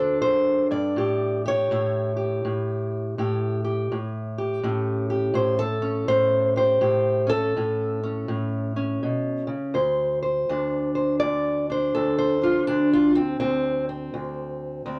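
A fingerpicked steel-string acoustic guitar opens alone and up front in this soulful, rollicking acoustic country blues excerpt, swinging at 82 BPM in 4/4 over chords that move from D7 to A7 and later to D7(no3) at 9.8 seconds. The guitar has a boxy, parlour character, spanning from D2 to D5 across its 15 seconds. Light reverb and a dark, warm production frame the solo performance.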